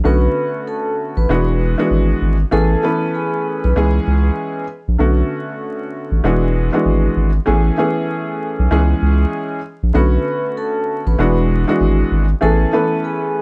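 A dark, woody upright piano with audible action noise and a worn cassette-tape tint opens this gritty, reflective hip hop excerpt alongside a thick, saturated sub bass up front, swinging at 97 BPM in B dorian through a Bm9, E7, Amaj9, C#m7 cycle, while a soft-mallet vibraphone with slow motor vibrato, plate reverb and tape echo rings out airily from 0.1 to 3.9 seconds and returns at 9.9 seconds, the whole wrapped in vinyl crackle and light reverb with dulled highs.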